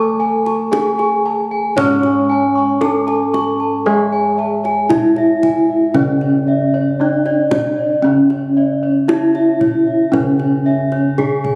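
This short clip of a longer Javanese gamelan piece in C# pelog opens on a stately, shimmering texture at 57 BPM, with an up-front, close-miked bronze metallophone carrying the melody in paired tuning over a lower metallophone accompaniment, high bossed-gong arpeggios with a round, vintage, band-limited beating, and ringing metallophone arpeggios touched with tape echo. Deep bossed gongs hold the bass in the background. From 0.5 seconds a tight, dry kendang played with soft hands joins, closing with a drum fill at 11.2 seconds, all set in a moderate concert-hall reverb captured on a phone in the room.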